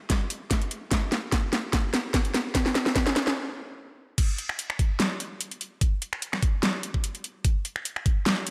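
Aggressive and chaotic, this dubstep excerpt runs at 147 BPM in 4/4 with a half-time feel and a light swing on the sixteenths, built entirely from an up-front dubstep drum kit of huge snare, metallic hats, crash cymbal and finger snaps alongside a knocking, layered electronic kick. A drum fill drives the build-up until a stop at 3.4 s, and the drop lands at 4.2 s and carries through to the end. The tape-tinged, produced drums sit in a lush hall reverb with a 1.8-second decay.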